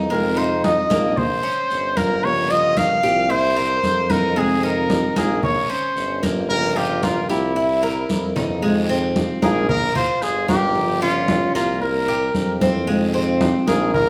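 A punchy trumpet sits up front with the melody, sounding somewhat distant and roomy as it carries the sultry Cuban son and guajira feel through this short cut from a longer piece. Beneath it, a Cuban tres plays metallic arpeggios on its doubled strings, while a dark, fingerpicked steel-string acoustic guitar fills in the accompaniment. A clear tuba with light vibrato holds down the bass, and ringing, soft-handed congas with a vintage tone join a raspy guiro in the percussion. The harmony cycles through Fm7, Gm7b5 and C7 in a straight 4/4, and a drum fill at 8.1 seconds leads into the second section at 8.6 seconds. The band sounds as if it is playing live in one room, bathed in a generous large-studio reverb that gives the performance a warm mood.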